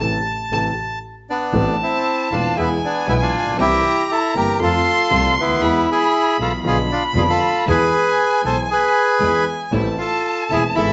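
A reedy, close-miked bandoneon carries the melody up front in this passionate, dramatic tango at 117 BPM in A harmonic minor, played with a rubato feel and opening on a band accent, while a distant bowed violin sings an expressive second line with portamento, a warm concert grand piano gives deep-bass accompaniment, a bowed double bass holds the low end with smooth vibrato, and a dark, very quiet string section joins with lush stabs at 1.5 s, the band heard live in a moderately reverberant large studio with a mellow top.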